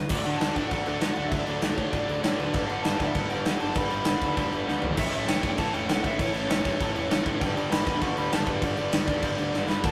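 Rebellious and energetic, this short punk rock cut from a longer piece charges ahead at 197 BPM in a straight 4/4. A big, natural-sounding rock kit sits up front from 0.1 seconds, with a punchy kick, a medium-tuned snare, toms and crash cymbal, and fills around 4.7 and 9.5 seconds. A bright, overdriven electric guitar drives the riff up front while a lo-fi garage guitar adds its own riff further back, joined by a fuzzed, picked bass that stays punchy beneath them. Over the top, a dark lead guitar pushed through a small cranked amp carries the melody in a high register. The chords move from D to G, then shift to A at 5.0 seconds before returning to G, all captured with a rough rehearsal-room feel, tube saturation and moderate reverb.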